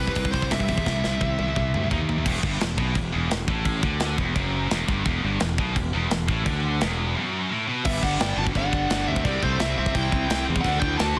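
Heavy metal excerpt in E minor at 172 BPM, relentless and dark, where a punchy, growly fuzz-overdriven fingered bass and a tight, up-front drum kit with china and crash cymbals play alongside two scooped, bright high-gain rhythm guitars in the background. A dark distorted lead guitar with delay states its melody at the start and returns at 7.9 seconds, joined by a quieter second guitar line, over a dense, heavily limited studio sound with chords moving from Em through G5 and C to D5.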